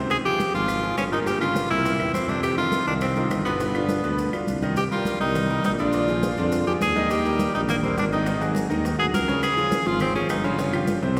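Awash in a long church reverb, this fiery, passionate salsa excerpt in C minor races at 206 BPM, with a punchy, forceful tenor saxophone carrying the melody up front with light vibrato over a brilliant grand piano whose action noise is audible, a mellow tuba bass with scooped notes, soft-handed congas and high-tuned bongos, grainy maracas, and woody claves that drop out after 4.5 seconds and return at 9.4, with a drum fill at 4.0 seconds leading into the repeated section.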